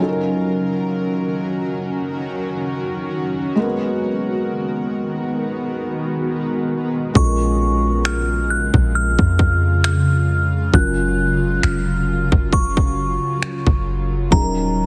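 A hard-clipped trap kick and finger snaps arrive at 7.2 s with a deep, boomy 808-style bass and a glassy, chorused synth bell melody, joining the intimate felt-muted upright piano and cloudy, warbling granular pad that open this longing, sensual contemporary R&B excerpt, all pressed into a heavily compressed radio sound with light reverb.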